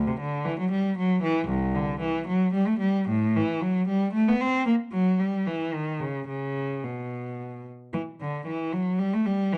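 Dark, softly reverberant production frames a rich, up-front solo cello, bowed by one player with vibrato and expressive portamento in the low register, as this brief, flowing and solemn baroque-style suite movement in E minor moves at a rubato 113 BPM in 3/4.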